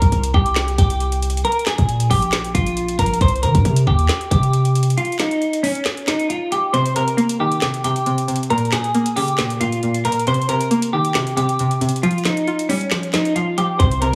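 A clean, hollow-body electric guitar carries a melancholic melody through vibrato, a low-pass filter and tape echo, over a boomy 808 bass and a hard-hitting half-time trap kit of knocking kick, woody snare, metallic hats and handclaps. After a brief break at 5.0 seconds, a twangy, bright resonator pluck with chorus and a filter sweep joins as accompaniment at 6.7 seconds, while the kick drops out and the deep bass stays away until a short return at 13.8 seconds. This cut from a longer hip hop piece sits in light reverb and small room ambience, with a heavily compressed, radio-like sound.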